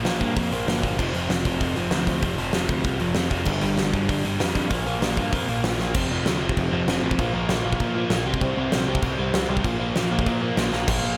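Punk rock at 194 BPM in a straight 4/4, this short cut from a longer piece feels energetic and upbeat from the first beat. A biting, double-tracked overdriven guitar sits up front playing a picked riff on power chords, moving from Bb5 through F5, G5 and back, then F5, Bb5 and C5 in the second half. Beneath it, a growling picked electric bass with its own overdrive adds a bright, amped edge in the low register. A big acoustic rock kit, also up front, drives the song with a fat snare, punchy kick, hi-hat and crash, its sound carried by a bright stone room. Drum fills at 5.8 and 10.7 seconds mark the turn into the second section and its close, and the whole mix sits in light reverb.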